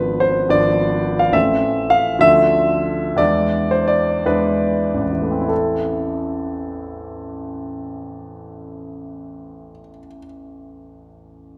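Passionate and stormy, this short romantic character piece for solo piano is cut from a longer work, its clear, intimate grand sitting up front with audible action noise and long sustain in a wet recital hall, moving in 6/8 with rubato through a harmony that opens on G#dim7 and slows down until about 5.5 seconds, where a second section begins.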